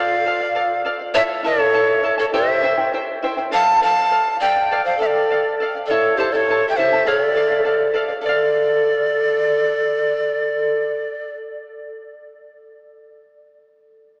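A large wooden quena carries the melody up front with a breathy, reedy tone, vibrato and a crisp chiffing attack, while a close-miked bamboo pan flute plays a mellow, straight-toned second line and a fingerpicked charango shimmers underneath with its doubled strings. This melancholic, wistful Andean folk excerpt moves at 102 BPM in 2/4 in D minor, cut from a longer piece, with both flutes stopping at 11.3 seconds and the charango ringing on until 12.1 seconds. The whole is bathed in a vast, echoing cathedral reverb yet heard through the sound of a small speaker.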